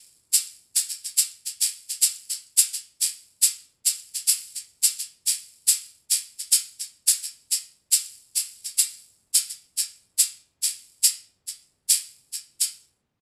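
A grainy, mellow tube shaker enters at 0.3 seconds and plays up front in a small-room acoustic sound, carrying this hypnotic, flowing West African traditional fragment at 106 BPM in 4/4 with a lightly swung sixteenth-note feel until it stops at 12.7 seconds, all set in a moderate studio ambience.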